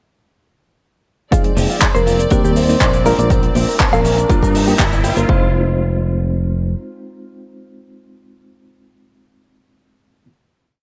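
Lightly reverberant and punchy, this brief, cosmic and groovy nu-disco piece builds from 1.3 seconds over a four-on-the-floor electronic kick, a dry, damped 70s kit of handclaps, hi-hat and shaker, very quiet ringing congas and an up-front fingered electric bass, while a reedy, worn electric piano with fast tremolo and sidechain pumping holds chords beneath soft, floating strings, a bright clean guitar riff under a filter sweep, a round octave-layered synth lead with dub echo, and a riser from 3.0 seconds that leads into a final Fm7 chord at 5.3 seconds.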